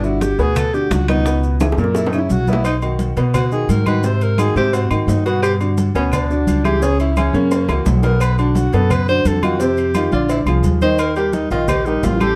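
A brisk, straight 4/4 groove at 173 BPM drives this sunny, lively Afro-Cuban jazz excerpt, built from bright, thin-skinned congas, tight high-tuned bongos and cowbell, grainy maracas in the background, ringing metal-shelled timbales and agogo bells, and very quiet woody claves entering at 0.6 s, with drum fills at 1.6 s and 7.5 s. Up front, a subtone tenor saxophone solos with vibrato over pizzicato upright bass on steel strings, while a slightly detuned vintage upright piano with long sustain comps through changes running from Gmaj7 to Eb. Light reverb sits over a dark, warm production.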